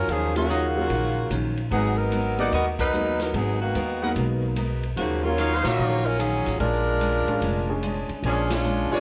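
Heard through worn, warbling old cassette tape with warbly pitch drift and a moderate large-studio reverb, this dramatic big band swing fragment in Eb minor at 147 BPM puts an up-front saxophone section with light vibrato on the melody over a woody, dark pizzicato upright bass, a picked steel-string acoustic guitar with finger squeak in the background, a polished grand piano with audible action noise, a swinging kit with punchy kick and ride cymbal, and soft-attack trumpet stabs, all hitting band accents at 2.7, 5.6 and 8.4 seconds across Ebm9, Abm9 and Bb7#9 chords.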